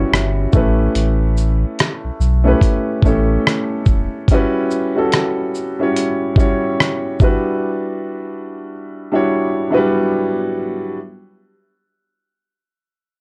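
Softened by cassette tape and a light reverb, this melancholic, reflective lo-fi hip hop fragment rests on a woody upright piano bathed in plate reverb, with a very quiet, dark, slightly broken-up electric guitar heard only in the first 0.5 seconds, a deep, round sub bass that drops out at 4.1 seconds, and a gritty, compressed sampler-style kit of thumpy kick, hi-hat, rim click and shaker that stops at 7.4 seconds, leaving the piano alone over its reflective chords.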